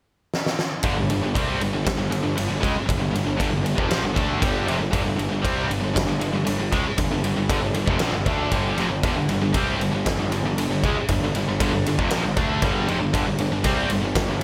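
Powerful and energetic, this hard rock excerpt drives along at 117 BPM in a straight 4/4. It opens with a drum fill from 0.3 seconds on a huge acoustic kit that sits up front, with a fat snare, a punchy kick and ride cymbal, all ringing in a big, natural room. At 0.8 seconds two heavy high-gain guitars enter on a riff over a G5 chord, both bright, distorted, picked and double-tracked, sitting in the background of the mix. Beneath them, a fuzz-laden picked electric bass adds a dark, round and punchy overdriven low end. Light reverb ties the parts together as the riff carries on to the end of the cut at 14.4 seconds.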